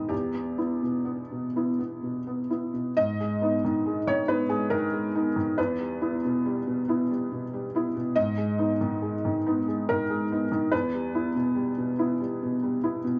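Moving in a rubato 3/4 at around 70 BPM, this short excerpt of neoclassical minimalist piano is reflective and melancholic, set in G# harmonic minor with the tuning raised to A4 = 445 Hz. A solo felt-muted upright piano plays throughout, soft and mellow with a boxy, intimate tone, short sustain and audible action noise, reaching from E2 up to D#5. The harmony sways between Em and G#m, opening a new section at 3.0 seconds, all wrapped in a wet small-room reverb that places the listener a little further back in the space.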